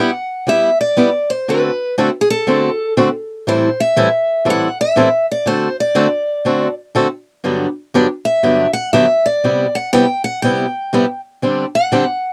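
A picked steel-string acoustic guitar carries the melody up front with a fresh-stringed, concert-like brightness, riding over a boxy, picked swing-style acoustic guitar that supplies the accompaniment in a lower register. This lively, swinging jazz piece moves through a short progression from G6 through D7, Am7, Gmaj7 and Cmaj7 before arriving on a D7sus4 near 11.4 seconds. The close, dry studio sound has a 1970s character, and the fragment is cut from a longer piece.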